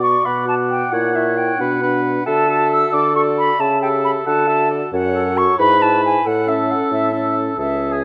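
In straight 6/8, this spirited, cheerful excerpt from a quick classical-period movement for wind quintet sets an airy, vibrato-tinged silver flute melody up front over a distant oboe second line, a mellow, distant clarinet and a dark French horn sitting in the background as accompaniment, and a smooth-topped bassoon bass, all held in a moderate scoring-stage reverb.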